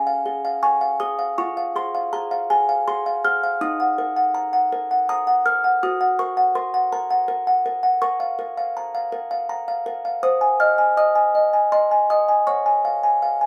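A lone music box opens this eerie, wistful classical lullaby in 3/4 at 81 BPM, its large-box tone delicate and tinkling yet dark, slightly out of tune and set up front in a moderate studio reverb. The harmony drifts from Db through Fmadd11, Ebm and Gb6 before settling into Bb minor at 8.0 s, then passes through Ab/C and returns to Db at 12.5 s in this short extract from a longer piece.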